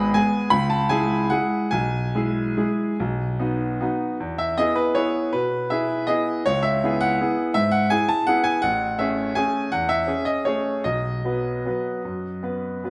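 A clear, open grand piano plays alone up front with long sustain, shaping an elegant, playful classical waltz in 3/4 with a supple rubato feel, moving from a minor-tinged opening into a brighter passage at 4.2 seconds, heard in a reverberant recital hall in this short section cut from a longer piece.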